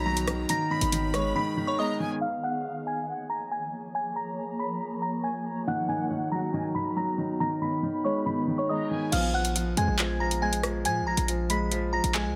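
Menacing and dark, this excerpt of half-time drill at 139 BPM in Bb phrygian opens with a delicate, tinkling FM synth bell carrying the melody through chorus and delay, over a smooth, vibrato-rich violin section, a blurred, evolving granular pad in the background and a clear concert grand piano filtered low. A silent gap falls at 1.4 seconds, and a filter sweep runs from 2.2 to 9.1 seconds while the chords move from Bbm7 through Badd9 and Abm. At 9.1 seconds the punchy, heavy 808-style bass and up-front electronic drum kit, with metallic hi-hats, handclaps, rim clicks and crash, return under a Bb7 chord with its third omitted as the strings and pad drop out.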